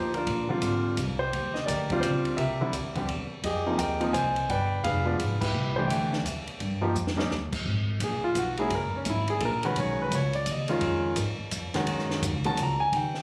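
A brisk, swinging 3/4 at 171 BPM drives this moody jazz piano trio excerpt. The clear concert grand sits up front with the melody, intimate and polished, with audible action noise and long sustain. Woody, thumpy pizzicato upright bass and a compact cocktail kit (dark cymbals, high-tuned snare, punchy kick) back it, hitting a band accent at 5.4 s and a drum fill before the piano takes a solo at 7.7 s, all heard through a phone in the room with moderate large-studio reverb.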